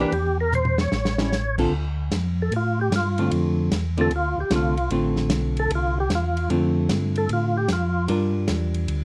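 A swung eighth-note groove in 4/4 drives this smoky, late-night soul jazz organ trio passage, cut from a longer piece. A dry, dark-cymbaled acoustic drum kit with a tight kick, medium-tuned snare, hi-hat, ride, crash and toms sits back in the mix and plays a fill from 0.5 to 1.3 seconds. Up front, a round, mellow tonewheel organ carries the bass line with chorus vibrato and a slow rotary speaker, while a clean, picked hollow-body archtop guitar, miked through an amplifier, fills in the accompaniment. A fat, lightly overdriven percussive organ, with key click, second-harmonic percussion, chorus vibrato and slow rotary, takes the lead and moves into a solo at 1.7 seconds, stopping at 8.1 seconds as the harmony shifts from Dm7 to Gm7. Light reverb gives the trio a touch of room ambience.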